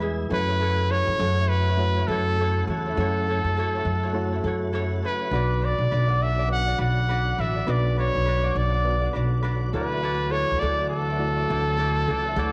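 This sunny, easy-going acoustic pop excerpt opens with a woody, dark upright bass, played pizzicato on steel strings with a touch of tube saturation and sitting up front, joined by a warm, light, fingerpicked ukulele. In the background, a reedy, barky electric piano with light overdrive and fast tremolo plays through its built-in speakers, while a full tonewheel organ holds sustained chords with light overdrive, chorus vibrato and a slow rotary speaker. At 0.3 s a clear solo trumpet enters up front with the melody, played in a classical style with a soft attack and light vibrato. The groove moves at 102 BPM in 4/4 with a gentle sixteenth-note swing, tuned to A4 = 436 Hz, and the harmony passes from F#m7 to Bm and then Dadd9. A moderate echo chamber reverb and small room ambience give the ensemble an intimate, relaxed space.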